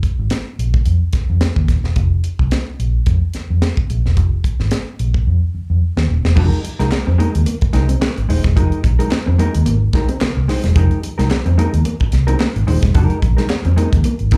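A swung sixteenth-note funk groove in 4/4 opens this hypnotic excerpt, with a tight, dry drum kit of bright cymbals, high-tuned snare and tight kick sitting up front beside a round, foam-muted vintage bass over an F7(no3) vamp. A drum fill at 5.3 seconds leads into a shift to Fm11 at 6.4 seconds, where two mellow, clean, compressed electric guitars with slapback echo enter, one providing accompaniment and a quieter one playing a riff in the background. Hollow, distant group handclaps join at 6.9 seconds, and the whole performance has the feel of a live gig heard through a club's PA.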